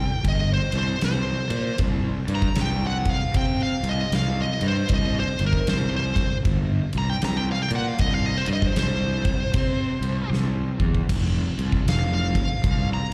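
A slow, heavy swing in four drives this gritty, heavy stretch of blues rock and southern rock, cut from a longer live performance heard through a venue's PA with the ambience of a recital hall. A big acoustic rock kit of punchy kick, medium-tuned snare, crash and ride with bright cymbals sounds as though played in a large room, and it snaps into a drum fill from 10.3 to 11.1 seconds. Up front, a fingered electric bass comes direct and amped, growly with fuzz and overdrive, holding down the low end. Over them, a smooth overdriven lead guitar, picked and bright, solos throughout, its line sitting in the upper register and carried by plate reverb and digital delay. The power trio moves from a C5 chord to F5 at 11.1 seconds, keeping the mood raw and weighty.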